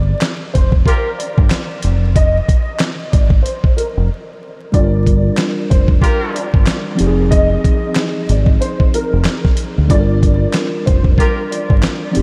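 A dusty, compressed sampler-style drum kit anchors this gritty, dark boom-bap hip-hop excerpt, its thumpy kick, fat snare, hi-hat and handclaps sitting up front beside a round, deep dub electric bass. A woody, slightly detuned upright piano carries the melody through tape echo and filtering, while a clear, distant horn section adds brief jazz-style stabs with light vibrato, and a worn, slightly out-of-tune tine electric piano joins as accompaniment from 4.7 s. Vinyl crackle, light reverb and digital ambience wrap the swung groove in a grainy haze.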